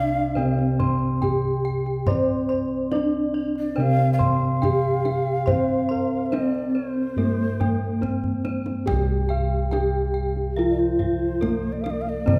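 Serene and shimmering, this Javanese gamelan excerpt in straight 4/4 sets a soft, padded bronze metallophone melody over a darker, smooth metallophone accompaniment, while a breathy, end-blown shakuhachi adds an expressive second line with vibrato and a tongued chiff. A bright, horn-struck metallophone ripples through quiet arpeggios with the beating shimmer of paired tuning, joined at 0.4 seconds by round, mid-forward bossed gongs on arpeggios, as lower bossed gongs carry the bass. The deep, close kendang, played with soft hands, enters at 0.2 seconds and breaks into a fill at 8.2 seconds, all set in the long bloom of a recital hall.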